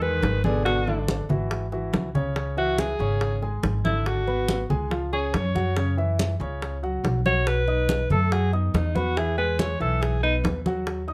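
Sultry, driving Afro-Cuban jazz cut from a longer piece, where a breathy, scooped alto saxophone carried on slapback echo and plate reverb plays the melody and takes a solo from 2.4 seconds, after a mellow baritone saxophone with light vibrato adds a brief second line that stops at 1.1 seconds, all over a deep-toned concert grand piano, a woody, thumpy pizzicato upright bass on gut strings, damped, thick-skinned congas and tight, high-tuned bongos played with soft hands, in a close, detailed recording with light reverb.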